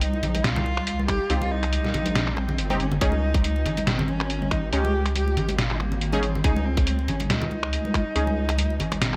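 A half-time deep dubstep groove at 140 BPM rolls with a light 16th-note swing, driven by a gritty, pitched-down sampler-style kit of finger snaps, hi-hat and snare, hard-handed congas in the background, and a tight, layered electronic kick that runs from 1.1 to 8.0 seconds. A saturated, up-front wobble bass throbs beneath a distant, woody bowed cello melody with vibrato and dub echo, while muted, detuned chord stabs with a plucky filter and chorus sit farther back, moving from Cm to Dbsus2 at 3.0 seconds. The mood is brooding and cavernous, with a dry room and the bass and kick carrying the most weight in this short cut from a longer piece.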